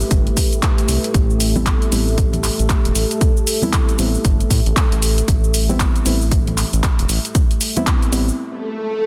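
A dense, heavily limited digital sheen frames this late-night deep house excerpt in A minor at 116 BPM with swung sixteenths, where a punchy, tape-warm kick sits up front over an overdriven kit of handclaps, hi-hat and shaker, a round, detuned analog bass and a moody chorused pad pump under sidechain on an Am9 chord, a faint reverb-washed ambient pad hovers in the background, a soft chord stab with cassette-tape grit, delay and a filter sweep enters at 1.6 seconds alongside bright, high-tuned congas, and after a break at 8.4 seconds an electronic swell sounds at 8.6 seconds.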